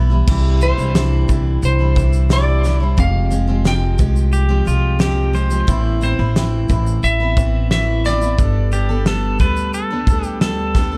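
This acoustic pop excerpt feels sunny and heartfelt, moving at an easy, straight pace over a chord cycle of Cadd9, Fmadd9, Amadd9 and Gadd9. A picked jumbo steel-string acoustic guitar with old strings gives a full-bodied bed, while a pizzicato upright bass sits up front with a woody, steel-strung tone. A loose indie drum kit in a pumping studio room adds a punchy kick, a fat snare, shaker and dark crash cymbals. The melody comes from a clean electric lap steel guitar, played with fingerpicks and a slide in a scooped, tape-echoed voice from 0.6 seconds, and a bright, twangy, compressed pedal steel guitar joins at 4.3 seconds with volume swells and its own tape echo as a second line. The lap steel drops out at 9.0 seconds, and the whole mix carries a dark, warm production with little reverb.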